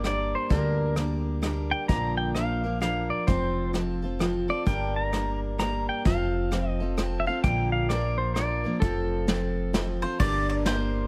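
A twangy, fingerpicked pedal steel guitar takes a clean, compressed solo from 0.0 to 10.2 seconds in this brooding, heartbroken honky-tonk and classic country excerpt in G minor, swung in 3/4 at 130 BPM, over a bright, full-bodied picked acoustic guitar, a woody, thumpy pizzicato upright bass and a soft brush drum kit with a punchy kick in a small room, before a double-strung mandolin enters with the melody at 10.0 seconds under light reverb.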